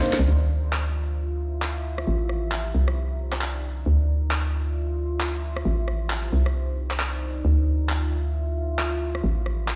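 A hollow, knocking FM bass sits up front with a bouncy, punchy bite over an overdriven garage drum kit of cracking snare, handclaps, hi-hat and rim click, while a deep, warbling, detuned ambient pad sustains through chorus, all at 134 BPM in a moody, late-night two-step UK garage groove that cycles through Dm9, Am9 and Cm9 in a stone-room reverb, cut from a longer piece.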